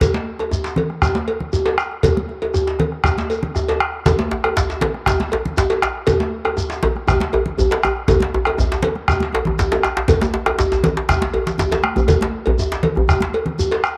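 A moderate spring reverb gives this short cut from a longer West African traditional drum ensemble piece a lingering sheen, and its straight 4/4 groove feels festive and driving. A round bombo sits up front at the base of the ensemble, while high-tuned congas ring out with a soft-handed touch. A metallic, band-limited cowbell and a cracking djembe, struck with hard hands, share an older, filtered vintage colour, and a grainy shekere adds a mellow shimmer from a livelier room. At 4.1 seconds a second djembe joins, tight and close-miked, pushing forward in the mix as the ensemble settles into its next passage. A brief drum fill around 11.6 seconds punctuates the groove before the recording ends.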